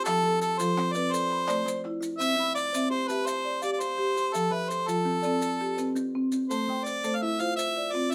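Southern African traditional music in a rippling, warm mood, built on an mbira-style interlocking cycle in 12/8 at 112 BPM in C major, cut from a longer piece. A clear, up-front harmonica carries the melody with classical-style vibrato, while a woody, dark marimba with medium mallets and a short, airy thumb-plucked kalimba weave arpeggios around it over a progression moving through F, Am and C. Grainy, close maracas run throughout, hollow group handclaps sit in the background only until 1.9 seconds, and light reverb gives the whole a gentle space.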